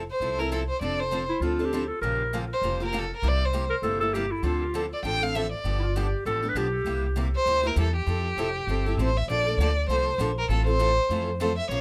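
Close, detailed microphones and light reverb give this short cut from a longer jazz manouche piece an intimate, present sound, charming and lively at 198 BPM in 4/4 with a swung feel in F major. A bright, picked steel-string acoustic guitar, its fresh strings catching the odd finger squeak, carries the accompaniment alongside a woody, thumpy pizzicato upright bass on gut strings, while an expressive bowed violin sings the melody up front with vibrato, a soft attack and portamento. Between 1.3 and 7.2 seconds, a punchy, vintage-toned clarinet adds a forceful second line with light vibrato and tape echo, before the chords shift into a new section at 9.3 seconds.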